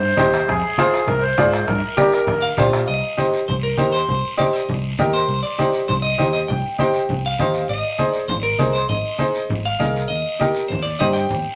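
Cumbia in C minor at 199 BPM, fiery and driving, cut from a longer piece. A reedy accordion and a soft-beater bombo open alongside a round, dark fingered electric bass, a worn, slightly detuned upright piano, low-tuned saturated congas and a raspy guiro, with the accordion and bombo dropping out at 2.9 seconds. From 2.4 seconds a twangy, picked clean electric guitar carries the melody up front through spring reverb, over chords moving from Fm and Gm7 to Cm, Ab and Eb in a moderately reverberant room.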